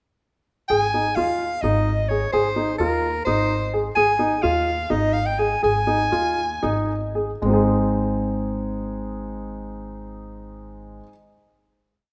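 Shimmering and restless, this short contemporary chamber piece in an uneven 7/8 meter moves at 222-257 eighths per minute in Ab major, as a clear, close-miked soprano saxophone sings a free, jazz-style solo melody with vibrato and scooped notes over a dark, mellow baby grand piano ostinato of arpeggios and a woody pizzicato upright bass on root and fifth. The music slows from 4.0 to 7.4 seconds, the saxophone drops out at 6.9 seconds, and the piano and bass hold a final chord from 7.4 seconds in a moderate recital hall.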